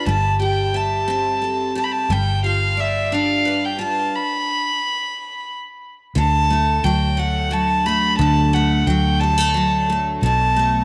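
A floating, sul tasto violin carries the melody through tape echo in this tender, heartfelt six-eight pop ballad at 59 BPM, over a bright, double-tracked steel-string acoustic guitar and a dark, foam-muted vintage electric bass in a moderate echo chamber reverb, with a stop from 4.1 to 6.2 seconds before the music settles into D major for the closing moments of this fragment from a longer piece.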